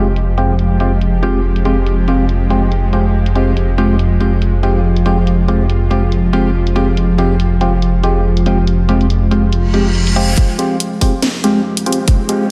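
A dark, detuned sawtooth bass rumbles up front through this excerpt of deep dubstep, its saturated low notes beating against each other around F1 while a high-pass filter trims the very bottom. Set at 141 BPM in F minor with a half-time, swung feel, the cavernous, meditative mood rests on an Fmadd9 chord held by a tense, string-like drone with a slow attack, vibrato and its own built-in reverb. Above it, a hollow, organ-like stab with a wave-folded edge decays, colored by chorus, phaser and dub echo. A tape-toned garage kit supplies hi-hat and a cracking snare, both softened by low-pass filtering, and a reverse cymbal rises from 9.7 seconds into a build-up with a riser. At 10.4 seconds a tight electronic kick drum lands up front, and the whole dreamy mix sits in a lush hall reverb.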